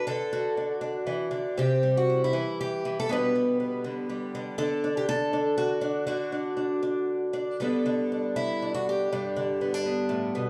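A shimmering, octave-doubled twelve-string acoustic guitar, picked up front with audible finger squeak, carries this gentle, pastoral solo folk fragment from 0.0 to 10.5 s, moving rubato in 3/4 at 120 BPM in G major through D, C and G/B into a chordless stretch at 4.6 s before settling on Gadd9 at 7.6 s, set in a moderate, large studio reverb.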